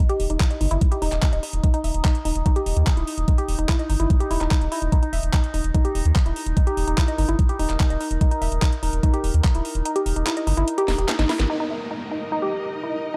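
A straight 4/4 pulse at 146 BPM drives this hypnotic psychedelic trance passage in Eb major, cut from a longer piece, with a knocking, up-front electronic kick and a garage kit of handclaps, cracking snare and metallic, low-pass-filtered hats, all over a round, nasal analog bass. A woody, wave-folded pluck riff with chorus and digital delay pumps against a resonant, overtone-sweeping drone of sustained chords, and the kick drops out at 9.9 seconds before a drum fill and a band accent at 11.4 seconds. From 11.5 seconds a downlifter, a filter sweep on the synth arpeggio and a dark, bowed chamber string section with vibrato join the pluck and drone in a dry, dark production.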